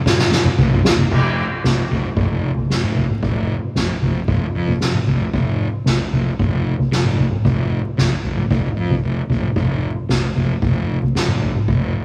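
A soft-mallet drum kit leads this dark, trippy psychedelic rock fragment, opening with a fill that runs to 1.1 seconds. The kit sounds acoustic and natural, with a boomy kick, a fat snare, toms and dusky crash cymbals, all struck with soft mallets and placed up front with a hall-like character. Beneath it, a fingered electric bass plays from low F1 to F2, its overdriven fuzz tone round and shadowy, heard direct and through an amp and also up front. The piece moves at 114 BPM in a straight 4/4, and both parts carry on together until the bass closes at 12.0 seconds. Moderate studio ambience and a layer of vinyl crackle give the recording a worn, murky texture.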